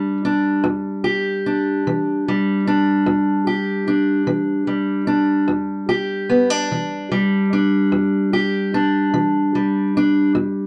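A fingerpicked steel-string parlour guitar carries this short blues fragment alone, sitting up front with a dark, woody character and the dull ring of old strings. Its slow, mournful pulse falls in a 12/8 metre, while the straight feel gives the playing a patient, unhurried weight. The guitar opens on an Em7 chord and ranges from E2 up to G4, filling the low end with a boxy body while its upper notes stay close and smoky. A modest small-room ambience wraps around the instrument, lending it an intimate, late-night air. Cut from a longer piece, the passage lasts 10.7 seconds.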